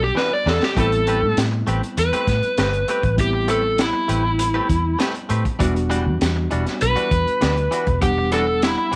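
Mournful and brooding, this excerpt of straight-eighth soul blues in E minor moves at 99 BPM, with an overdriven slide guitar soloing up front through slapback echo over a reedy electric piano shimmering with fast tremolo. A round, foam-muted vintage bass anchors the low end, while a twangy, direct-recorded clean guitar adds picked stabs and a gritty, saturated breakbeat kit with a high-tuned snare and punchy kick enters at 0.2 seconds with a short fill. The harmony shifts from Em9 to Am9 and back, all set in light reverb and studio ambience.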